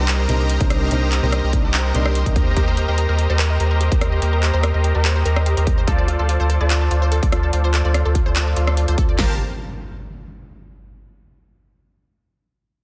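A half-time 4/4 groove at 145 BPM with a light 16th swing drives this bittersweet, emotional future bass excerpt in G minor, where a huge, detuned supersaw riff under a filter sweep and a deep, saturated sub bass pump against a punchy, layered big-room drum kit of kick, snare, claps, metallic hats and rim clicks, while a soft felt-muted upright piano colours the opening until 2.4 seconds, a warbling, vintage pluck arpeggiates quietly in the background from 2.6 seconds, and an electronic impact lands at 9.2 seconds over chords moving from Cm7 through Eb6 and Dm7 to Gm11 in a dense, heavily limited mix with light reverb.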